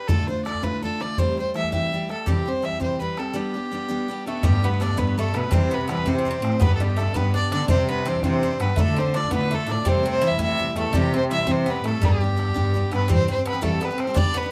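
Close, detailed microphones and a light reverb give this brief cut from a longer piece an intimate, clear sound. It is a bright, cheerful Celtic jig in 6/8, led by a single bowed fiddle with a nasal, reedy, gut-string tone sitting up front, carrying the melody over a picked steel-string acoustic guitar whose full-bodied jumbo sound is also close at hand. A bodhran plays throughout, its boomy, open tone set back in a large room. After a short break at 3.4 seconds, a picked Irish bouzouki joins at 4.3 seconds with a metallic, double-string second line touched by slapback echo, and a muted cello enters at 4.4 seconds as a distant bass, dark and veiled, bowed con sordino with vibrato, soft attacks and portamento. The cello drops out at 13.1 seconds as the tune moves into a new section, while the fiddle, guitar, bodhran and bouzouki carry on to the end.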